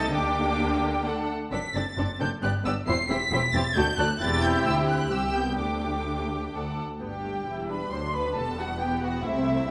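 Dark, woody first violins carry a high melody up front in this dramatic, urgent classical-period excerpt for string orchestra in a rubato triple metre, over smooth second violins, expressive violas and double basses sliding with portamento, and rich cellos set further back, the whole ensemble bathed in a wet recital-hall reverb as the music moves into a new section at 7.0 seconds.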